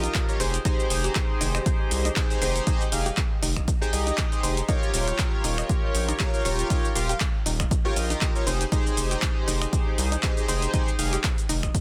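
Swung sixteenths at 119 BPM in 4/4 drive this moody, warm deep house excerpt in F minor, where a punchy, up-front electronic kick and a small-room analog drum machine of finger snaps, handclaps, hi-hat and shaker carry the groove beneath a deep, wave-folded analog bass, glossy retro polysynth stabs with ring modulation, filter sweeps and tape echo, and bright, chorused pluck arpeggios with 12-bit sampler grit and tape echo sitting in the background, while the bass, stabs and pluck all pump against the sidechain as the harmony moves from Fm9 to Eb9 at 4.7 seconds and back to Fm9 at 8.5 seconds, all within light digital ambience and a dense, heavily limited modern master.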